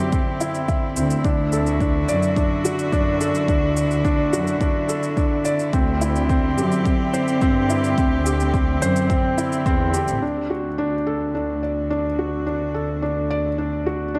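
A soft, intimate felt-muted upright piano with audible action noise and tape echo plays an up-front riff over the sustained chords of a distant, clear string quartet and a lush, biting bowed double bass section with sidechain pumping, while an overdriven electronic kick drum and shaker drive this luminous, tender piano-and-strings electronica at 107 BPM in D mixolydian until the kick drops out at 9.8 seconds and the shaker at 10.2 seconds, all set in a moderate concert hall reverb with a dark, warm production.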